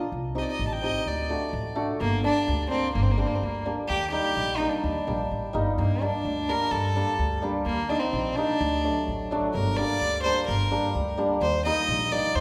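A woody, plucked upright bass with steel strings opens this soulful, festive klezmer excerpt at 0.1 s. A mellow, shimmering hammered dulcimer joins almost at once with ringing accompaniment, and a single bowed violin enters with the melody at 0.4 s, its tone rich and pure with a soft attack and a floating, sul tasto sound. All three sit up front over a straight two-beat pulse in a resonant church or concert hall whose long, wet reverb gives the passage a spacious glow.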